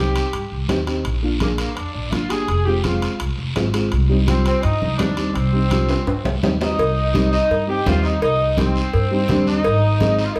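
A live band shares one big studio room, and a lush reverb hangs over this passionate, danceable cumbia clip in C minor at 168 BPM. Up front, a dark saxophone section with light vibrato and a vintage jazz tone carries the melody over a mellow, boxy, slightly detuned upright piano and a woody pizzicato upright bass. A raspy, distant guiro, thick-skinned, damped congas in the background, and ringing, close, dry timbales and cowbell drive the groove, with a drum fill from 5.9 to 6.8 seconds leading into a new section.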